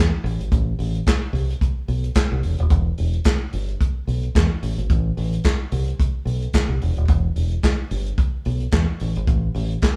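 Light small-room reverb surrounds this driving, danceable disco piece in E minor at 110 BPM with a swung 16th-note feel, where a punchy, direct fingered electric bass opens at 0.0 seconds and is joined at 0.3 seconds by a roomy soul drum kit of tight kick, medium-tuned snare, hi-hat and handclaps, both parts sitting up front like a band playing live together.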